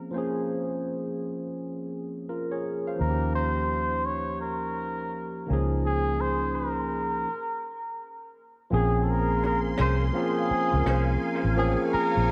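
A barky, lightly overdriven tine electric piano with analog chorus opens this introspective, smooth neo-soul excerpt at 84 BPM in a swung Bb dorian 4/4. At 3.0 seconds a round, punchy, foam-muted fingered bass and a veiled, breathy cup-muted trumpet with light vibrato and analog delay join in. After a stop from 7.3 to 8.7 seconds, a silky, phased string machine enters, and a clean, dark hollow-body jazz guitar soon slips into the background, all bathed in a dreamy, lush hall reverb.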